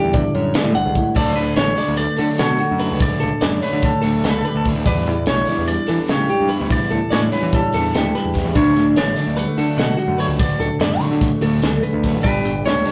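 A rough rehearsal-room recording with light reverb captures a playful, sunny math rock and midwest emo fragment in 9/8 at 292 BPM (eighths) in D major, tuned to A4 = 445 Hz: a twangy electric guitar carries the melody over a dark, finger-played mellow electric guitar, compressed clean guitar arpeggios, a growling overdriven picked bass and a crisp, up-front fusion drum kit with a high-tuned snare and punchy kick, while a crunchy, double-tracked overdriven guitar riff joins in the background at 1.2 s as the chords move through Dmaj7 and Em7.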